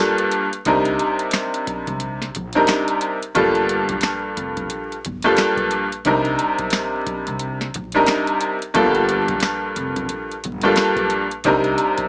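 Dark and reflective, this short cut of boom-bap hip-hop rides a swung groove as a bright, slightly detuned upright piano, filtered and up front, opens alone and cycles between Gm7 and Cm7 chords. A booming analog drum machine with a deep kick, tonal snare and metallic hats joins at 0.2 seconds, followed by a woody, thumpy pizzicato upright bass at 0.7 seconds and very quiet finger snaps at 1.3 seconds. Light reverb, vinyl crackle and a small-speaker tone color the recording.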